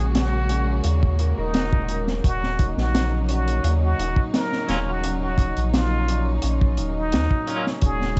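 A breathy, plunger-muted trumpet carries a whispered, jazz-style melody through tape echo over lush bowed strings and ringing, echoing harp arpeggios, both touched with vintage 12-bit sampler grit, while a round dub sub bass and a crunchy, saturated breakbeat kit with punchy kick and high-tuned snare set a brooding, cinematic trip hop groove at 86 BPM in Eb minor, moving from Gbadd9 to Ebm7, with a clean, picked electric guitar adding tremolo-laced accompaniment from 4.7 to 7.7 seconds inside a small room flecked with vinyl crackle, in this passage cut from a longer piece.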